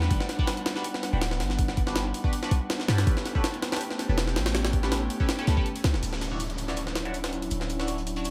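A gritty, pitched-up jungle sampler-style kit drives this dark, raw drum and bass excerpt from the front, its thumpy kick and high-tuned snare heard in a large room over a deep, boomy 808-style bass. Above them, an airy, breathy pad holds detuned chords through Gmaj7, A9 and Dmaj9, while a nasal, band-passed stab plucks bright chords through phaser and dub echo. At 6.0 seconds a filter sweep moves across the pad as a saturated breakbeat kit with a shaker and an electronic downlifter join in the background, all set in a light studio reverb.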